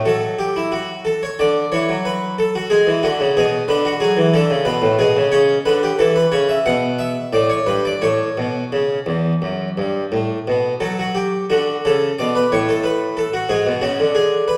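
Classical baroque-style suite movement for solo harpsichord, radiant and flowing in 4/4 with a rubato feel, its airy, brilliant Flemish-style tone of three sets of strings sounding full and up front, while a wet recital hall reverb places the listener further back in the room across this short 14.6-second cut from a longer piece.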